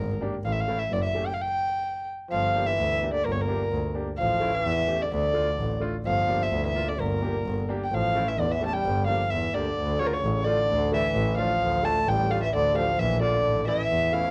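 In a straight two-beat klezmer pulse, this soulful, bittersweet fragment opens with a reedy, gut-string violin carrying the melody up front over a biting, earthy bowed double bass and a woody upright piano, all three halting together in a brief stop at 1.4 seconds before a solo trombone in classical style joins on the second line at 2.3 seconds, the whole lo-fi home cassette recording bathed in moderate spring reverb and small-room ambience.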